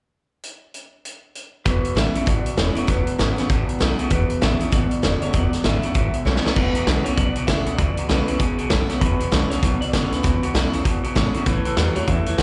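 This rowdy, rollicking rockabilly fragment sounds like a live gig heard through the venue's PA, with club reverb and a dulled top end. A vintage drum kit opens alone at 0.4 seconds, up front with a punchy kick, a medium-tuned snare, dark, gritty cymbals and hi-hat. At 1.7 seconds the band crashes in on E7 at a swung 196 BPM in E mixolydian: a woody, thumpy pizzicato upright bass, a bright, lo-fi, twangy electric guitar riff with slapback echo low in its range, and a full-bodied jumbo acoustic guitar picked in the background, finger squeaks and all. Above them a compressed, slightly broken-up electric guitar takes the melody through slapback and tape echo. A drum fill at 6.3 seconds kicks off the next section, and the harmony moves to A7 at 11.5 seconds before the cut.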